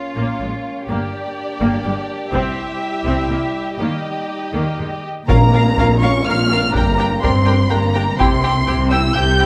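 Cinematic, epic orchestral film score in 3/4 at 124 BPM, heroic and dramatic in mood, heard as a passage cut from a longer piece. A dark, expressive violin section carries the melody from the start, with a second, richer violin line beneath it and a mellow, vintage-toned French horn section holding sustained chords. Violas fill out the accompaniment in the background, while cellos and double basses, both bowed with soft attacks and vibrato, anchor the low end under a progression that moves through Bbm, Gm, C and Eb. A taiko ensemble played with heavy sticks enters at 2.3 seconds. At 5.3 seconds the second section opens with a full-band accent, joined by a round, very quiet timpani stroke on soft mallets and a dark, dry tam-tam set back in the mix, all sitting in a moderate scoring-stage reverb.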